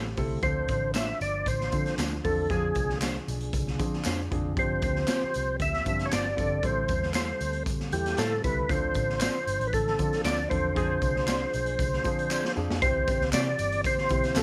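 Uplifting and warm, this uptempo 1960s-style soul passage in C major moves at 116 BPM in a straight 4/4, cut from a longer piece. An overdriven tonewheel organ carries the melody up front, its full, gritty tone colored by chorus vibrato and a slow rotary speaker, while a soft, flute-like second organ holds very quiet sustained chords beneath it. A baby grand piano with short sustain supplies natural-sounding accompaniment, an electric guitar through a small old amp adds slightly broken-up stabs with subtle chorus in the background, and a dark, foam-muted picked bass gives a round, amped bottom. The raw garage drum kit sits up front with a boomy kick, medium-tuned snare, hi-hat and a pumping small-room sound with a rolled-off top, joined by an egg shaker and group handclaps. A clear, punchy saxophone section with tape echo appears only in brief bursts at 2.5 and 10.8 seconds, marking band accents over the Fm6 chords, and a drum fill at 12.3 seconds leads into a new section that lands on C at 12.8 seconds. 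Light reverb and studio ambience frame the whole band.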